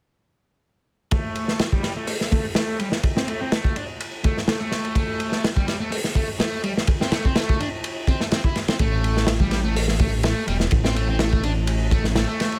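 A crunchy breakbeat drum kit drives this funky, gritty breaks cut from a longer piece. Its punchy kick, medium-tuned snare, hi-hat and dark ride cymbal sit up front in a small room, saturated and rolled-off at the top. Running from 1.1 to 12.6 seconds alongside the drums, a double-tracked distorted electric guitar picks a compressed riff between G3 and E4. The guitar's bright tone is roughened by tube saturation, vintage 12-bit sampler grit, delay and a low-pass filter sweep. At 8.8 seconds a dark, detuned saw bass arrives, deep and rumbling with a beating unison sustain that stays up front until 12.3 seconds. The groove sits at 125 BPM in A minor, with a slight swing on the sixteenths.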